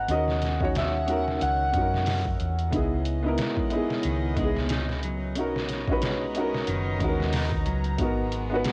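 A swung 4/4 at 91 BPM anchors this smoky, melancholic trip hop fragment, with a sampler-style drum kit up front, pitched down and compressed, its thumpy kick, medium-tuned snare and hi-hat carrying a gritty cassette-tape texture. A round, dark hollow-body electric bass sits underneath, while a felt-muted upright piano plays intimate accompaniment close to the listener, boxy and short in sustain with audible action noise, colored by harmonic tremolo and 12-bit sampler grit. A shimmering hammered dulcimer carries the melody only until 3.6 seconds, just as a slightly broken-up electric guitar slips in at 3.4 seconds with picked arpeggios in the background, treated with tape echo. Behind them, a chamber violin section holds sustained chords with light vibrato and a reedy, gut-string period tone. The harmony drifts from D#m7 through C#m9 and Bmaj9 to G#m9, all set in studio reverb with the hazy character of a home cassette recording, cut from a longer piece.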